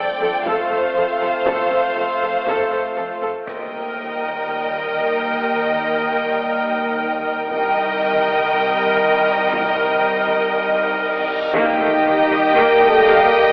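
A straight 4/4 pulse at 119 BPM drives this tense, futuristic hybrid orchestral and electronic film-score passage, where lush bowed violin sections carry the melody and an up-front second line over smooth violas, close cellos and background double basses, while distant dark French horns hold chords at the start and return at 11.5 s alongside very quiet trombones, a warbling lo-fi tape-like pad with chorus sits underneath, background taiko played with heavy sticks adds weight, and huge impacts and a reverse cymbal mark the section changes, the whole mix heard through a wet scoring-stage reverb and a telephone-like filter.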